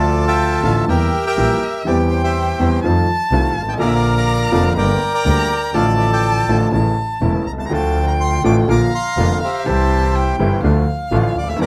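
A reedy, dry bandoneon carries the melody of this dramatic, passionate tango in D minor from the first moment, over a bright, woody upright piano accompaniment and a bowed double bass that sounds biting and earthy up front, while a dark violin adds a second line with vibrato and portamento. The feel is rubato at 123 BPM in 4/4, moving through chords such as Dmadd9, Edim, F7 and Gm before settling onto Dm, Bb, C and Dm. At 7.7 seconds a warm second bandoneon enters with stabs in the background, all captured through close, detailed microphones with light reverb in this fragment of a longer piece.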